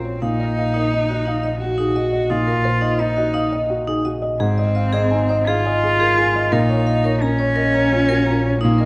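A dark, bowed cello played sul tasto with light vibrato sits up front over a soft, intimate felt-muted upright piano, a floating double bass and, from 0.2 s, a ringing hard-mallet vibraphone with slow motor vibrato tracing arpeggios, in this fragile, melancholic neoclassical excerpt in Bb minor at 86 BPM in a rubato 3/4, moving through Ebm/Bb, Ab and then Bbm under light reverb.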